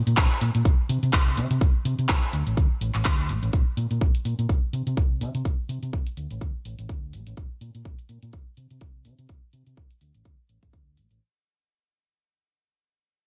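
A swung groove drives this funky, sunny filtered disco house excerpt, built on a punchy, tape-warm electronic kick sitting up front and an overdriven analog drum machine supplying dry handclaps and hi-hats that pump against the kick, with a touch of gated reverb. A dark, round hollow-body short-scale electric bass, fingered and amped, also pumps with the kick while a low-pass filter sweeps across it for the whole clip. The bright 1980s-style digital production keeps the room tight and close, and the entire passage plays as one long fade-out.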